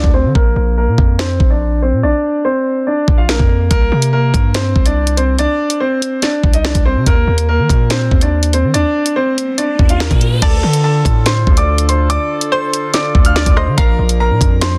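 Tense and cold, this half-time drill cut at 143 BPM in D phrygian sets a clear, up-front concert grand piano melody with tape echo and a filter sweep over its opening break against a punchy, heavy 808-style bass and a knocking, sharp-snared electronic kit with bright hats, until a background riser at 9.3 seconds ushers in a distant, roomy brass section and a hollow, bouncy, detuned square-wave pluck with chorus and tape echo at 10.4 seconds, all in a dense, heavily limited modern master with little reverb.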